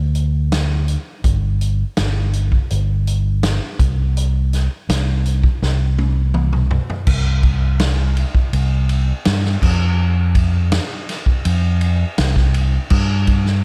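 Psychedelic rock at 82 BPM in a straight 4/4, this short excerpt from a longer piece feels hazy and kaleidoscopic, built only from a fingered electric bass and a vintage drum kit, both placed up front in a dry room. The bass sounds round, amped and punchy as it moves between G1 and G2. The drums carry dark cymbals, a medium-tuned snare, a tight kick and a rolled-off top, and a drum fill from 5.6 to 7.1 seconds leads into the second section.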